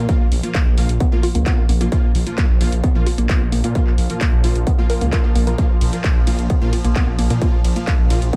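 A short cut from driving peak-time techno at 131 BPM opens at once on a Bb5 chord, with a woody, wave-folded pluck riff tucked dark in the background, aggressive, full-bodied rave stabs carrying chorus, reverb and delay, and a thick, beating detuned saw bass that sounds menacing yet mellow under saturation. At 0.1 s an up-front distorted kick arrives, layered with a techno kit of handclaps, hi-hat and ride cymbal whose warm hats and cymbals pump against it. A deep, moody ambient pad fades in at 0.3 s as a slow-blooming, warbling vintage drone in the background. The pluck's moving notch and filter sweep give its organic, percussive tone a restless edge, while sidechain pumping breathes through the pluck, stabs, bass and pad. The kick and bass sit loudest in a large-room digital ambience, and the mood stays hypnotic and industrial across the straight 4/4 groove.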